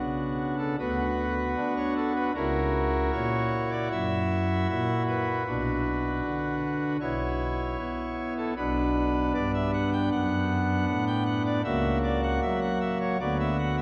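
A pipe organ sounding its cornet stop carries this short classical excerpt alone, its nasal solo voice set up front against a cavernous church acoustic. The piece moves in a chorale style with a rubato feel, its phrasing stretching and settling rather than keeping strict time. Romantic voicing spreads the sound from deep bass tones up into the upper register, and the harmony circles the home minor chord, leaning on dominant colors before returning to rest. The mood is solemn and dark, deepened by a shadowy production and a long reverberant tail that lingers for about 3.2 seconds after each chord. Lasting roughly 13.8 seconds, it plays as a fragment lifted from a longer work.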